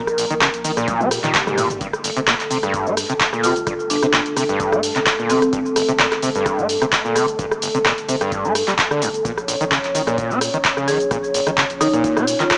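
Driving and gritty, this acid house excerpt in G minor runs at 129 BPM with a light 16th-note swing, as a squelchy, distorted acid bass riff with resonant filter sweeps and dub echo sits up front over a dry, punchy analog drum machine of handclaps, hi-hat, rim click, shaker and toms, a deep, tape-tinged electronic kick and a thick saturated sub bass in the background, a moody, detuned pad sustaining dark chords that move from Bb7(no3) to Gm and then Bbm at 9.2 s, a drum fill and background swell near 1.0 s, and a woody marimba melody with dub echo surfacing at 3.4 s and again at 10.9 s, all heard through a small room and a small speaker.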